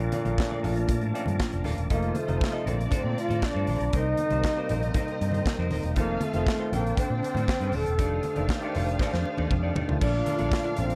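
A dark, warm small-room mix carries this joyful, danceable disco excerpt in Bb major at 118 BPM, where a mellow, distant trombone sings the melody with light vibrato over a punchy, up-front drum kit and round fingered bass, while a worn, slightly out-of-tune tine electric piano adds a fill from 0.9 to 1.9 seconds, a clean semi-hollow guitar with spring reverb and a lightly overdriven tonewheel organ with key click and slow rotary speaker sit in the background, very quiet bright congas play along with hard hands, and a lush, woody string section bowing sul tasto enters at 1.9 seconds before a drum fill at 9.0 seconds.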